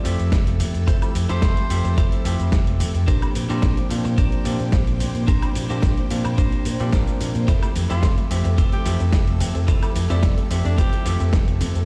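Opening on a bell-like tine electric piano and a lush string machine, both pumping under sidechain, together with a warm, chorused clean guitar riff with analog delay, this sunny, feel-good nu-disco excerpt in F major at 109 BPM adds a punchy envelope-filtered fingered bass, a gritty overdriven sampler-style kit with an up-front thumpy electronic kick, and a clear tenor saxophone with tape echo that slips in at 1.3 seconds and returns at 7.9 seconds alongside a faint, warbling detuned unison pluck arpeggio, all over Fmaj7 and Bb69 chords in a bare stone room on a big sound system.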